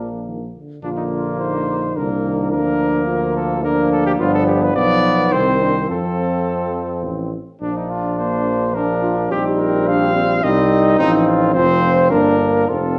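In a straight 3/4 at 106 BPM, this triumphant, noble classical brass quintet passage in Bb major sets a dark, punchy trumpet melody up front over a mellow flugelhorn second line, a distant, roomy French horn and a soft-attack trombone in the background, and a warm tuba bass also up front, all five playing with light vibrato throughout the 13 seconds inside a stone room reverb and the warbly pitch drift of worn cassette tape.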